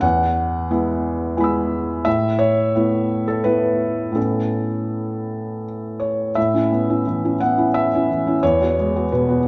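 Neoclassical minimalist piano in A major, this brief excerpt moves at a gentle 81-89 BPM in 3/4, its rubato phrasing giving it a tender, hopeful mood. A felt-muted upright piano plays alone from start to finish, spanning E2 to E6 with a soft, mellow, intimate tone that sits up front. The harmony rests on added-ninth chords, opening on Eadd9 and settling into Aadd9 at 2.1 seconds. A second passage begins at 6.4 seconds with a rootless Aadd9 before turning back to Eadd9 at 8.4 seconds. The piano sounds natural within a reverberant recital hall, whose 1.8-second decay lends the close, muted instrument a spacious glow.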